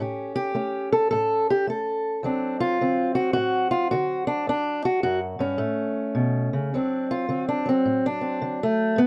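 Soulful and rollicking, this short excerpt cut from a longer piece is acoustic country blues with a lilting swung feel in 4/4. A lone fingerpicked steel-string acoustic guitar carries everything, its parlour-style tone dark and boxy and placed up front in the mix. The guitar ranges from its low D2 up to A4, moving through A7 and D7 harmonies before settling on A and returning to D7. From 6.7 seconds the music shifts into a new section where the guitar takes a solo turn until the close at 9.1 seconds. Light reverb surrounds the instrument, and the overall production leans dark and warm.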